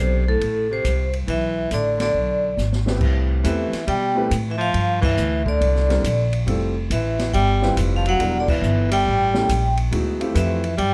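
Light reverb and a natural studio room frame this short cut from a longer small-group swing and bop piece, with the woody, steel-strung pizzicato upright bass sitting up front. The mood is warm and swinging, and a metallic, ringing vibraphone carries the melody with medium hard mallets and a medium motor vibrato. Beneath it, a breathy baritone saxophone plays a second line with a clear, smooth top, while the grand piano gives intimate accompaniment, its action noise audible. The piano sounds only briefly at the start, then rejoins during a drum fill that leads into the second section at 3.0 seconds. The acoustic kit offers dark cymbals across crash, ride and hi-hat, a high-tuned snare and a boomy kick, and band accents land at 5.0 and 8.4 seconds over rich extended chords.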